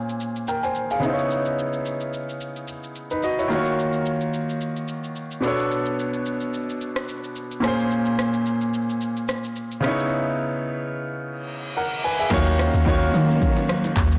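A clear, polished baby grand piano opens this hypnotic amapiano excerpt in Eb minor at 109 BPM, sitting up front under a filter sweep while an electronic afro-pop kit with a deep kick, handclaps, rim clicks, shaker and crash settles into a swung sixteenth-note feel. An electronic reverse cymbal rises at 11.4 seconds into a drop at 12.3 seconds, where a round, dark log drum bass with a fast attack and decaying tail enters to carry the low end. Distant bowed strings with vibrato and portamento pump behind it, and very quiet, bright congas and bongos join, all inside a lush hall reverb and a blown-out, overdriven sound.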